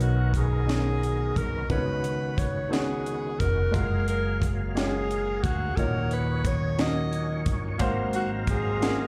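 Jubilant yet reverent, this slow gospel piece in 6/8 at 59 BPM in F# major sets a clear, close-miked alto saxophone melody with vibrato and slapback echo over a natural grand piano, gritty sustained chords from an overdriven tonewheel organ through a fast rotary speaker with chorus vibrato, a woody pizzicato upright bass and a dry, tight funk drum kit with a high-tuned snare, the band heard as a live club gig through the venue's PA with small-room reverb as the harmony moves from Bmaj9 to G#13.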